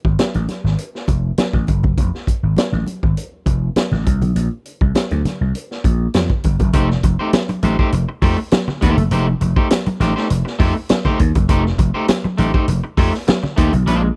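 Playful and strutting, this funk groove moves at 101 BPM in a straight 4/4, centred on F mixolydian and slightly below standard pitch. A vintage slap bass sits up front from the start, growly and punchy, ranging from F1 to F2, alongside a raw garage drum kit of hi-hat, kick and snare whose boomy kick and gritty, saturated character come through with a rolled-off top. Congas tucked in the background add damped, thin-skinned hand percussion played with soft hands. The harmony moves from F to Bbadd9 at 4.4 seconds, and at 6.7 seconds an electric guitar at the edge of break-up joins on an F9 chord, its twangy, scooped picking spanning Ab3 to C5. The dry, close sound evokes a 1970s-style studio in a small room, and the piece is cut from a longer recording.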